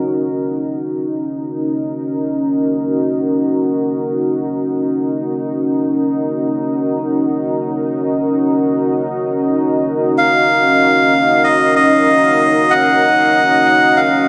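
Ambient in free time, spacious and hazy, built on a deep, moody pad of detuned sawtooth and sine voices with a sub octave, holding a sustained Ebm7 chord from the start through 14.3 seconds, softened by chorus and its own reverb. At 10.2 seconds a reedy, breathy melodica enters up front with a short melody, close-miked and nasal, trailed by dub echo. The whole cut, taken from a longer piece, sits in an echo-heavy mix with light studio reverb.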